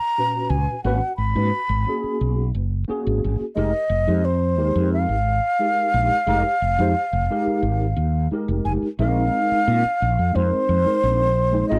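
A straight 4/4 pulse at 88 BPM drives this slick, intense slice of electric jazz fusion, cut from a longer piece, where a breathy concert flute with vibrato, crisp attack and rolled-off highs carries the expressive, up-front melody through a slapback echo, a clean tine electric piano heard through its built-in speakers adds ensemble-chorused accompaniment from 0.2 s, and a round, dark fretless electric bass, direct and amped with analog chorus, enters at 0.5 s, the harmony moving from Abm11 to Fm11 and then to Bb9sus4 at 9.0 s in a dry, close 1970s-style studio sound with light reverb.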